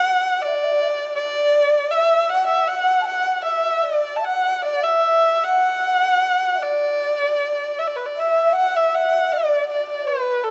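A dark, woody erhu sits up front with the melody, its single bowed line shaped by vibrato and portamento. Behind it, a breathy, hollow bamboo shakuhachi plays an end-blown, tongued second line with its own vibrato, both instruments sounding together for the full 10.5 seconds. This short cut from a longer Chinese traditional chamber piece moves in a graceful yet festive rubato around 78 BPM in D gong mode, with a moderate plate reverb and a rolled-off top end giving the pair a soft, rounded sound.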